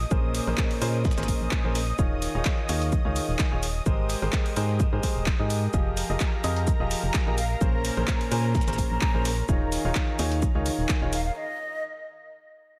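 A punchy, up-front electronic kick drives this energetic, bittersweet piano house cut at 128 BPM in 4/4, with a light 16th-note swing, layered with a house kit's handclaps and hi-hat and a very quiet, gritty sampler-style kit adding hi-hat, shaker and snare. Underneath, a dark, hollow FM bass with an organ-like, percussive attack pumps with sidechain compression, while a silky, detuned sawtooth string pad with ensemble chorus sits bright but in the background, holding sustained chords. Up front, a clear, intimate baby grand piano plays the riff, its action noise audible, softened by a low-pass filter and trailed by a diffuse ambient delay, pumping along with the bass and pad. The harmony moves through Bbm9, Eb9sus4, Abmaj9 and Fm9 before returning to Bbm9 and Eb9sus4. At 7.4 seconds a breathy, mellow concert flute enters with a tongued, close-miked melody touched by vibrato and its own ambient delay. 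Light digital reverb surrounds the mix, and the other parts drop out into a brief break at 11.4 seconds while the flute lingers a moment longer, as this excerpt is cut from a longer piece.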